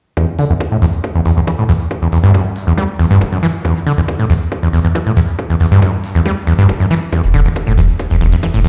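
A squelchy, gritty sawtooth acid bass riff opens this dark, intense slice of driving peak-time techno in E minor at 138 BPM, sitting up front with a resonant filter sweep, sidechain pumping and digital delay, while a heavy, layered electronic kick enters together with it and smooth electronic hi-hats join at 0.4 s. At 7.2 s a deep, thick saturated sub bass arrives on a sustained E1, adding tube-saturated weight with sidechain pumping beneath the riff. The whole cut sits in a lush hall reverb, sounding as if played on a big sound system in a bare room.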